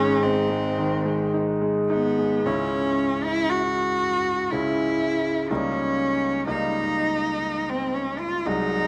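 A single bowed cello and a grand piano begin together, both up front, in this yearning, elegiac romantic duo cut from a longer classical piece. The cello carries the melody with a rich, focused tone and vibrato, staying between B3 and F#4, while the piano accompanies from a deep G#1 up to E4 with a bright, polished sound, long sustain and audible action noise that lends it an intimate presence. The music moves in a slow 3/4 at roughly 52-62 BPM, with flexible rubato, in C# minor and tuned to A4 = 439 Hz. It opens on a G# harmony, and a new section at 2.5 seconds settles onto C# minor before shifting to D#7 over C# at 5.5 seconds. A wet recital hall reverb with a 1.4-second decay surrounds the pair through to the close at 8.9 seconds.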